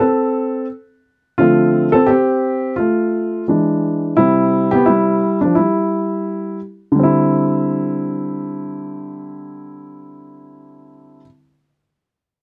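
A dark, warm production with light reverb gives this smoky, mellow hip hop piece its hazy character. A woody upright piano sits up front and carries the whole recording, holding an accompaniment role in its middle register. It plays alone for the first 7.0 seconds, moving through Am/C, Dm7, E7 and C over a gently swung 16th-note feel in 4/4. At 7.0 seconds the music shifts into a new section on a Dsus2 chord, and the piano continues until 11.3 seconds. The warm, unhurried mood suits what is a short passage cut from a longer piece.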